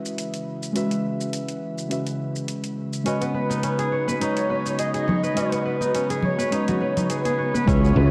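This hypnotic, organic downtempo excerpt at 104 BPM opens at 0.0 s on a C#m chord, with muted, felt-like synth keys pumping gently against a nostalgic, warbling tape-like pad, while an overdriven electronic shaker and metallic hi-hat tick along in a swung 16th feel. At 3.1 s the harmony moves to Badd9 as a breathy, flute-like synth lead carries the melody with vibrato, joined by crisp, ringing fingerpicked kora arpeggios trailing delay and shimmer reverb, and soft-handed congas. A growly fretless electric bass and a punchy overdriven kick arrive together at 7.7 s, all bathed in a lush hall reverb and the drifting pitch of worn cassette tape.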